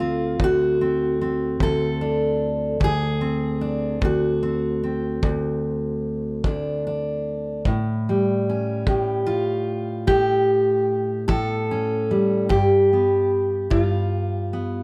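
Acoustic country blues with a swaggering, laid-back feel in a straight 12/8, led by an up-front jumbo steel-string acoustic guitar fingerpicking the melody with audible finger squeak and plate reverb, over a distant, roomy kick drum played with brushes, moving from D7 to A7 at 7.7 seconds and G7 at 12.5 seconds in this short excerpt.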